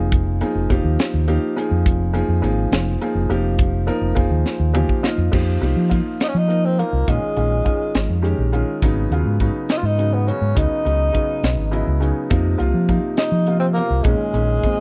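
Electric jazz fusion in a straight 6/8, funky and nocturnal, with a boxy grand piano comping over a dark, round fingered electric bass and a crisp drum kit whose high-tuned snare and punchy kick sit up front in a dry, close studio sound of the 1970s. After a shared piano and drum fill around 4.5 seconds, the harmony opens onto suspended and minor eleventh chords, and a mellow tenor saxophone enters at 6.2 seconds with a soft attack, vibrato and a distant, roomy slapback echo. The piano adds another fill near 11.4 seconds before this fragment of a longer piece breaks off.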